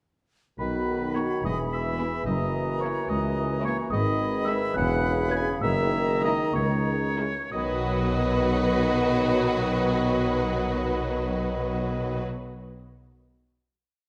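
Quirky and playful, this short, whimsical film cue in B major moves in a lilting 6/8 at roughly 59-73 BPM, counted in dotted quarters. A delicate, bell-like celesta carries the tune in the background from 0.6 seconds, doubling it at the octave, while a bright oboe, an airy silver flute and a very quiet, mellow clarinet add second lines above the bassoon's accompaniment and a soft, vintage French horn section holding sustained chords. The low end is built from a close cello section, a bowed double bass section and a warm tuba, with the double basses and tuba doubling the bass line. At 1.2 seconds the upper strings arrive: a lush, smooth-topped violin section takes up the melody, a focused, distant second violin section plays a second line, and the violas fill in accompaniment, all mixing pizzicato with sustained bowed chords. The harmony passes from B through E and F#7 to G#m, C#m7/E and F#13, and the tempo slows between 3.1 and 7.5 seconds before the ensemble settles on a final B chord. 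A moderate concert hall reverb gives the whole orchestra a spacious, gentle glow.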